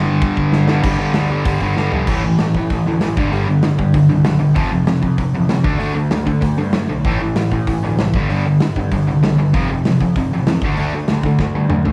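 A bright, double-tracked distorted guitar riff and a punchy, fuzz-overdriven picked bass open this urgent, aggressive punk rock excerpt from a longer piece. A big acoustic rock kit with a boomy kick, medium-tuned snare and bright cymbals joins at 0.2 seconds, and the band drives a G5, A5, F and D5 progression with a turn to Am under light studio reverb and vinyl crackle.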